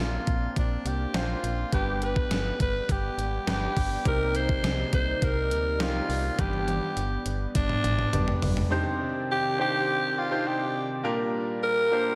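1980s-style pop at 103 BPM in C minor, this short cut from a longer piece feels urgent and nostalgic, set in a big arena sound with a wet concert hall reverb. A raspy, gritty alto saxophone carries the melody up front, its edgy tone treated with digital delay and slapback echo. A bright concert grand piano with deep bass and short sustain supplies accompaniment, also touched by slapback echo, while a brassy analog pad built from detuned sawtooth tones holds evolving sustained chords with chorus, vibrato and a soft attack. A snappy FM bass with a metallic attack plays until 8.6 seconds, and a clean 12-bit drum machine with a thumpy kick and overdriven, up-front punch runs from 0.3 to 8.7 seconds, closing with a fill from 6.4 seconds. The harmony moves through chords such as Bbadd9, G and Cm7, then the final stretch shifts to Cmadd9 and Bb6 as the sax, piano and pad carry on alone.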